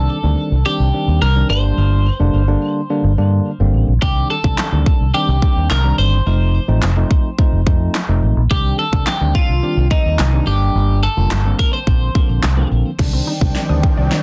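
A dark, round, foam-muted electric bass sits up front with a pumping pulse, driving this energetic yet bittersweet dance-pop passage alongside a clean tine electric piano that pumps in the same way, while a twangy, compressed twelve-string electric guitar carries the melody through tape echo. At 4.0 seconds a punchy, layered pop drum kit enters with a fat snare, handclaps and crash cymbal. From 13.0 seconds a drum fill and build-up bring in a lush, detuned unison pluck playing echoed arpeggios in the background, followed by an airy, breathy pad with chorus and phaser at 13.2 seconds and a very quiet riser at 13.6 seconds, all under a dense, heavily limited master with light reverb.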